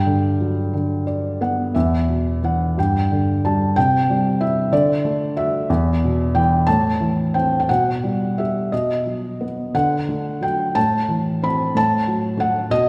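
This calm, lyrical classical excerpt for solo piano moves in an unhurried 6/8 at about 57-63 BPM in E minor, its rubato phrasing drifting from a Gmaj7 opening through chords such as C, D, Am and B. A felt-muted upright piano, heard up front, carries everything across a span from E2 to B5 in a soft, mellow, intimate voice, with the audible action noise adding a natural closeness. A brief fill from 0.7 to 1.8 seconds leads into the longer second section, and a wet two-second reverb places the sound in a church or concert hall.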